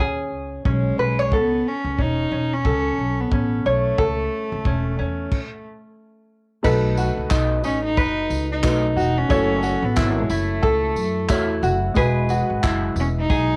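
A bright, fingerpicked tenor ukulele and a woody pizzicato upright bass open this carefree, heartfelt stretch of acoustic pop at 90 BPM in 4/4, with a 16th-note swing. At 0.7 seconds a single bowed cello takes the melody, its rich, biting tone earthy but smooth on top. It arrives alongside an airy country drum kit with a punchy kick, crash cymbal, handclaps and tambourine. The ukulele, bass and cello sit up front, and the bass carries a touch of tube saturation. After a stop between 5.3 and 6.6 seconds, a warm, woody upright piano joins the accompaniment, and a jingly tambourine sits distant in the background as the harmony moves through B7, F#m7 and Eadd9. Cassette-tape colouring and small room ambience give this section of a longer piece an intimate, homemade feel.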